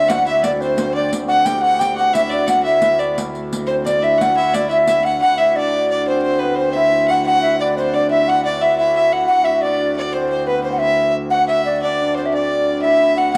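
Rustic and festive, this medieval dance moves at 118 BPM in dotted quarters, a straight 6/8 lilt in D mixolydian. A hollow, airy tenor recorder carries the melody up front, its wooden tone marked by a tongued chiff, though it still sounds somewhat distant. Alongside it, a single bowed fiddle with a rich, focused, slightly boxy tone and light vibrato plays a second line in the same register. A shimmering, ringing hammered dulcimer adds another second line lower down. A reedy, breathing pedal harmonium with a vintage, band-limited sound holds a low D drone throughout. A riq with bright jingles and hard hands drives the opening from 0.1 s to 5.1 s, then returns only briefly at 13.3 s, just as this fragment of a longer piece ends, all of it washed in a heavy echo-chamber reverb.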